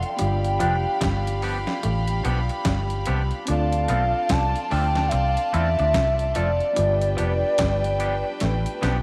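A swung lovers rock reggae groove at 73 BPM in 4/4 rides on a thumpy, overdriven 8-bit drum machine and a round, foam-muted fingered bass up front, with a drum fill at 8.4 seconds. Over it, a hollow, woody clarinet-like synth lead with chorus, vibrato and tape echo carries a longing melody. It is joined by a floating, softly bowed violin section and a mellow tine electric piano with slapback echo, moving through G7 and Dm7. Two twangy electric guitars sit in the background, one playing a bright picked riff from 0.2 seconds and the other fingered stabs from 0.6 seconds, in a bittersweet echo-chamber space.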